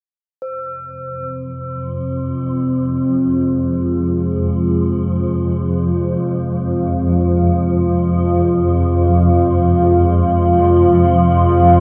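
A ringing, metallic bronze singing bowl fades in at 0.4 seconds, joined within a second by a deep, moody pad of sustained chords treated with chorus and a swarming, detuned, granular synth drone that also fades in, the two up front in this unsettling, cavernous dark ambient excerpt, all steeped in an enormous reverb and the warbling pitch drift of worn cassette tape.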